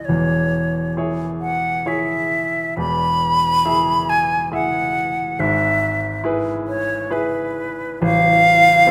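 Classical romantic duo in a rubato 3/4, tender and lyrical, where an airy silver concert flute with soft attacks and expressive vibrato carries the melody up front over a brilliant grand piano of short sustain, both heard close and detailed in a moderate recital hall reverb through this brief cut from a longer piece, moving from C#m/E to E and E/G# before the harmony falls away at 8.0 seconds.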